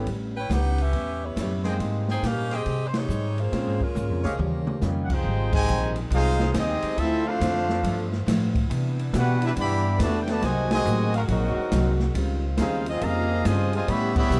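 A swung 4/4 groove carries this energetic, brassy big band swing excerpt, with a woody, growly pizzicato upright bass, a picked acoustic guitar with finger squeak sitting in the background, and an open jazz drum kit with dark cymbals and a boomy kick underpinning a clear baby grand piano, whose audible action noise is heard as it accompanies until 5.1 seconds; a warm, up-front saxophone section leads the melody over trumpet stabs, a drum fill arrives at 4.0 seconds, a clear trumpet section takes the melody from 5.0 seconds, and a distant, roomy trombone section plays a second line while a very quiet, close-miked saxophone section sustains chords, all within a dark production with light reverb.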